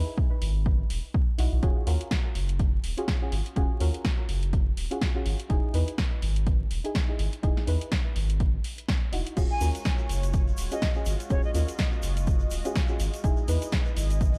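This moody, late-night deep house excerpt at 124 BPM sets a punchy kick, an analog drum machine with snare, hi-hat and crash, and a round, pumping analog bass beneath dark, nasal chord stabs steeped in chorus and tape echo. A smooth, warbling pad and grainy egg shaker join at 9.4 seconds, and a breathy, bright jazz flute with 12-bit sampler grit and dub echo floats in at 9.5 seconds amid vinyl crackle and an echo-heavy haze.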